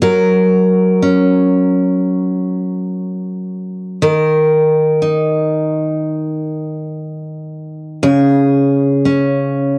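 Pop excerpt at a slow 60 BPM in straight 4/4, carrying an emotional, melancholic mood across just under 10 seconds. A lone picked steel-string acoustic guitar sits up front, full-bodied and dreadnought-toned, moving from F# to D#5 at 4.0 seconds and C#5 at 8.0 seconds within a range of C#3 to A#4. The guitar carries a cassette-tape character, and the small room ambience gives the whole an intimate home-recorded feel.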